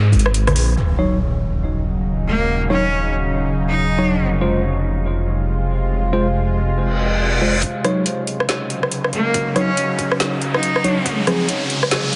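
A dark detuned saw bass rumbles up front through the first 7.6 seconds of this heavy, dark deep dubstep excerpt at 140 BPM in half-time swing, joined by a bell-like tine electric piano with dub echo, a tense string-like drone, a biting bowed cello melody, distant congas, a muffled thumpy kick, an overdriven garage kit with a woody snare and metallic hats, and electronic impact, reverse cymbal and riser, before a build-up from 7.6 seconds, all through a heavily compressed radio-like sound with spring reverb.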